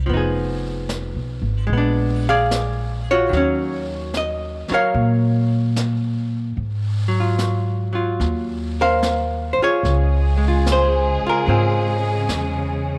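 Jazz ballad at a relaxed 74 BPM in 4/4 with a gentle swing, carrying a romantic, late-night mood over a progression that moves from Fm7b5 through Bb7b9, Ebm9 and Ab13 to Dbmaj7. A dark, clean, hollow-body archtop guitar plays picked accompaniment up front beside a woody pizzicato upright bass, while a soft brush kit of snare and hi-hat sits further back in a small, natural room, all within a moderate spring reverb. At 9.8 seconds a lush, bowed string section enters with smooth, even sustained chords and gentle vibrato, closing this excerpt from a longer piece.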